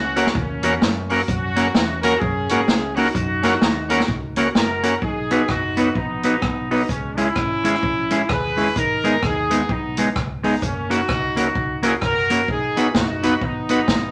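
A wet studio reverb frames this bouncy, joyful ska excerpt in a swung 4/4, where a clear, tight horn section carries the melody up front over a round, foam-muted vintage fingered electric bass, a dark, clean electric guitar accompaniment and a natural big-band drum kit of hi-hat, punchy kick drum, rim click and snare drum, while a bright, shouting tonewheel organ with light overdrive and a stopped rotary speaker adds stabs in the background until 4.9 seconds and again from 12.8 seconds.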